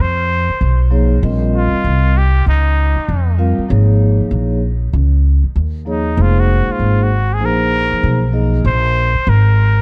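A nasal, breathy trumpet with a straight mute and tape echo plays an intimate jazz-style melody over growly, woody pizzicato upright bass from 0.0 seconds, and a ringing vibraphone with soft mallets and slow motor vibrato joins at 0.9 seconds in this cool, mellow hip hop cut from a longer piece, swung at 97 BPM in Bb minor, with a dark small-room sound.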